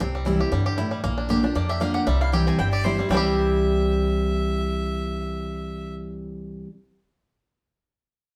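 A full-bodied, up-front steel-string acoustic guitar drives this lively, rustic bluegrass fragment at 232 BPM with a swung feel, its picking carrying a touch of finger squeak beneath a twangy, fingerpicked banjo melody and a thumpy, woody upright bass. A mandolin joins in the background at 1.6 seconds, and a nasal, earthy bowed fiddle adds a second line from 2.7 seconds, as the harmony moves from C to Bb and back to C in C mixolydian. The band sounds live in one room, set in a wet studio reverb.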